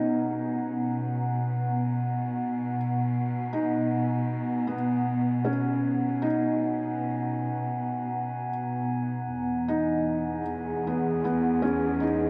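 A deep cathedral reverb with a 6.5-second tail surrounds this luminous, warm ambient piece in B major, which moves at an unhurried 78 BPM in straight 4/4 and is cut from a longer work. Up front, a felt-muted upright piano carries the melody in a soft, intimate, dark voice within a narrow low-middle range, touched by tape echo. Beside it, a warbly, nostalgic, lo-fi pad holds sustained chords with slow attack and long release, its chorus and built-in reverb giving it a hazy, mellow glow. Beneath them, a rich, bowed cello section with vibrato supplies the bass and fades in across the whole passage. High in the background, a glassy, ethereal glass harmonica holds a single beating tone, also fading in, as the harmony moves from Bmaj7 to Emaj7 at 9.3 seconds.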